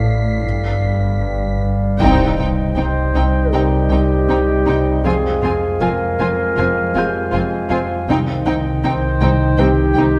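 Mysterious and ominous, this cinematic suspense cue in C minor moves at 79 BPM, opening over a deep, rumbling drone with its own reverb, a glassy glass harmonica, a ringing thumb-plucked harp riff, a felt-muted upright piano with audible action noise, veiled muted cellos and double basses, and a brief high muted studio violin texture that ends by 1.6 s. At 2.0 s a huge, dark impact and a band accent usher in muted violins carrying the melody and a second line, a very quiet distant viola accompaniment, and punchy, mellow French horn chords, with a roomy solo clarinet adding its own line from 2.8 s. The dark production sits in a moderate scoring-stage reverb as the harmony moves from C minor to F minor and back.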